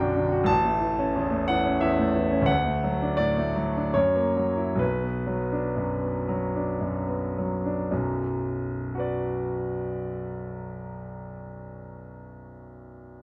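A bright concert grand piano carries this romantic classical character piece alone, its brilliant treble and deep bass reaching from A1 up to A5 with a long sustain. The mood is brooding yet bittersweet, shaped by a flexible rubato in triple metre that gives the phrasing a searching, spoken quality. Harmonies move from A to D, then through F#7 before settling on B minor, and the pace slows from 1.5 to 7.9 seconds as the opening passage draws to its close. A second section begins at 7.9 seconds and carries on until the excerpt ends at 13.2 seconds, plainly cut from a longer work. The piano sits up front with an open tone, framed by a moderate, large studio reverb that lends the notes a spacious glow.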